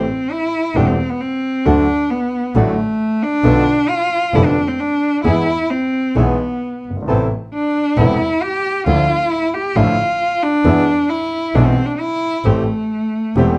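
From the first second a focused, bowed cello with vibrato takes the solo over a vintage-toned concert grand with audible action noise and deep bass, a sul tasto double bass with an airy bow, and dark, reedy bandoneon stabs set back in the mix. This passionate, nostalgic tango in A minor moves at 133 BPM in 4/4 with a rubato feel, cycling through chords such as Am7, Bm7b5, E and Dmadd9 before returning to Am7 at 12.4 seconds. A moderate large-studio reverb and worn, warbly cassette tape with pitch drift give this short cut from a longer piece an aged, intimate sound.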